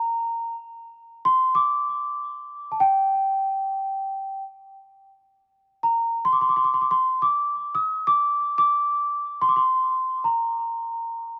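A dry, close studio sound with a 1970s character frames this short cut from a longer Persian piece in free time, tuned to A4 = 437 Hz. A large celesta plays alone in its high register, its bell-like, sweet tone vintage and band-limited, sitting up front with a touch of tape echo. The mood is longing and soulful, with the opening phrase returning at 5.4 seconds.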